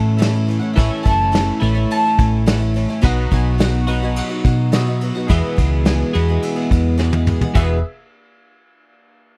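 A dry, close 1970s-style studio sound frames this jangly, warm folk rock and heartland rock excerpt in E major at 106 BPM, with a woody, double-strung mandolin carrying the melody over a clean, compressed twelve-string electric guitar riff treated with analog chorus and a boxy, shimmering picked twelve-string acoustic with audible finger squeak. A round, amped hollow-body short-scale bass sits up front beside a soft brush kit with a tight kick and rolled-off top, which enters at 0.2 seconds, while a very quiet, brilliant grand piano adds accompaniment with its action noise audible. The chords move from A to B to E, and a drum fill at 7.0 seconds leads into a new section at 7.5 seconds.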